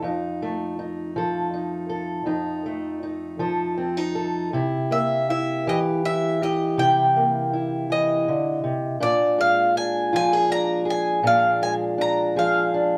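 Acoustic country blues with a gritty, laid-back mood, rolling along slowly at 54 BPM in 12/8 over F7, C7 and Bb7 chords in this short excerpt from a longer piece. A dark, boxy parlour steel-string guitar, fingerpicked and up front, plays the accompaniment throughout, and a bright, woody mandolin with double strings and a touch of plate reverb enters at 4.9 seconds to carry the melody high above it. The pair sits in a small, reverberant room, heard from a little further back.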